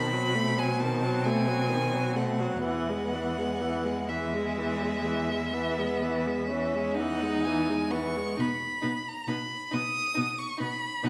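A reverberant recital-hall acoustic surrounds this brief, tender passage from a slow romantic string quartet movement in 12/8, played with flexible rubato. The first violin sings the melody up front with a focused, vibrato-rich tone, while the second violin plays a close, expressive inner line coloured by vibrato and portamento. The viola sits further back in the hall, adding accompaniment with the same expressive slides and vibrato, and the cello grounds the ensemble with a full, bowed bass line shaded by vibrato and portamento. The harmony opens on a tense B7b9 chord that settles onto E at 2.6 seconds, and a new section begins on B at 8.4 seconds. All four bowed players share a lush, warm blend, and the phrase is cut from a longer piece.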